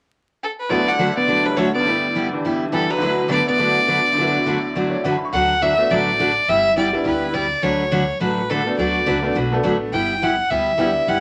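Playful and cheerful, this short western swing excerpt in D major at 208 BPM with a swung feel puts a biting, up-front fiddle melody over a bright, picked acoustic guitar and a jangly tack piano, while a dark, hollow-body jazz guitar adds a brief second line until 5.0 s and a woody, pizzicato upright bass enters at 5.3 s, all set in a small reverberant room with vinyl crackle.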